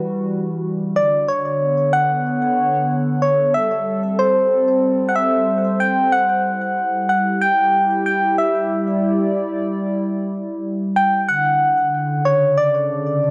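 IDM with an intricate, melancholic mood, built on a hollow, flute-like pad whose detuned, softly sustained chords move through Em9, Bm9 and Am7 beneath a round, keys-like FM lead. The lead's fast attack and decaying, gently vibrato-touched notes carry the melody, given shimmer by chorus and delay, while the mellow, nasal pad sits slightly lower in level with its own chorus. A dark production and a moderate echo-chamber reverb wrap both parts across this 13.3-second fragment of a longer piece.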